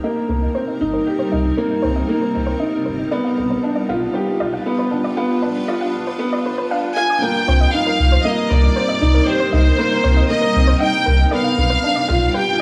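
Melancholic and hypnotic, this piano and strings electronica piece is cut from a longer work and moves from a build-up into a drop at 7.2 seconds. A woody, boxy upright piano sits up front with a riff treated with digital delay, over a cloudy, blurred granular pad holding sustained chords in its own built-in reverb. In the background, a dark, warbling pluck plays arpeggios colored by chorus, cassette tape and digital delay, and a filter sweep on it runs through the build-up. A deep, round sub bass enters at 0.3 seconds, and at 7.0 seconds a rich, smooth violin section takes the melody with vibrato, sounding distant yet up front. The whole is set in a moderate recital hall reverb with small room ambience and a high-pass filter, over harmony that moves between Cm7 and G7.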